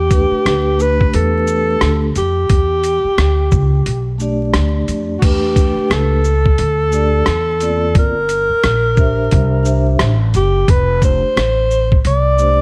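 Vinyl crackle and studio ambience frame this cool, nocturnal jazz-hop excerpt at 88 BPM in 4/4, swung on the sixteenths, driven by a gritty, compressed, pitched-down boom bap drum kit up front with a thumpy kick, rim click, hi-hat, shaker and crash cymbal. A woody, dark pizzicato upright bass on gut strings anchors the low end, while a mellow, ringing vibraphone played with soft mallets and fast motor vibrato comps from 0.1 s. On top, a breathy, whispered alto saxophone plays an intimate jazz solo with scooped notes, a soft attack and a smooth top, sitting over Em7 before Gm, C9 and F close the passage.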